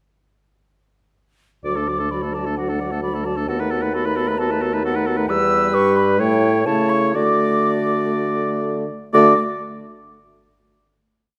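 The ensemble enters around 1.6 seconds, with the French horn joining at 1.7 seconds, and a pure, straight-toned concert flute carries a tongued melody high in D major over a cheerful, lively wind quintet in a quick classical-period style, around 120-134 BPM with a rubato feel. A clear oboe with light vibrato plays the second line while a distant, roomy clarinet and a clear French horn fill in with a rocking two-note figure, chords in the rhythm of the tune and sustained chords, above an up-front, dark bassoon holding sustained bass with passing notes and a smooth top. The harmony moves from D through B7/D# and Em to A7 before settling back on D, and the parts stop around 9.3 seconds, leaving a final chord to ring in a wet recital hall.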